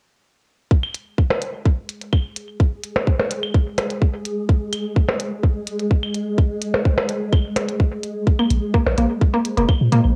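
Minimal techno with a hypnotic, quirky mood, cut from a longer piece and carrying the faint grain of a home cassette recording in a small room. A tight, overdriven kick sits up front with clicky, tape-softened hi-hats and claves and percussion blips treated with analog delay, while from 2.1 s a swarming, detuned granular drone drifts underneath, tense and evolving, pumping against the beat. Near the end, at 8.4 s, a woody, mallet-like FM pluck with chorus and phaser arrives, joined a moment later by a deep, punchy sine sub bass with a pitch-drop attack.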